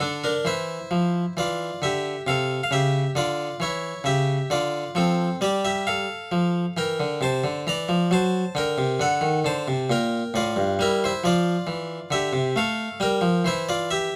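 A lone French-style harpsichord, airy and bright with a plucked single set of strings placed up front in a small, moderately reverberant room, opens this serene, radiant fragment of a baroque-style classical suite movement in D minor, unfolding in a rubato 3/4 at about 67 BPM across a range from G2 to Bb5 as its harmony moves from Dm through Gm and D7 toward C and F/A before arriving at C/E at 13.4 seconds.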